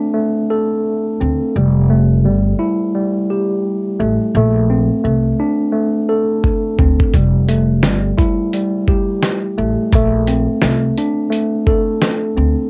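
A lightly reverberant, cassette-worn home recording opens this confident boom-bap hip-hop passage, cut from a longer piece, with a mellow, slightly out-of-tune tine electric piano, filtered and tape-coloured, moving between a rootless Bbmaj9 and Fmaj9 over a swung 4/4 feel. A woody pizzicato upright bass with steel strings and tube saturation arrives at 1.2 seconds, sitting up front with the keys. At 6.4 seconds a gritty, compressed sampler-style soul drum kit enters with a fill, its thumpy kick, medium-tuned snare and hi-hat re-recorded in a small room, lending the groove a warm, dusty weight.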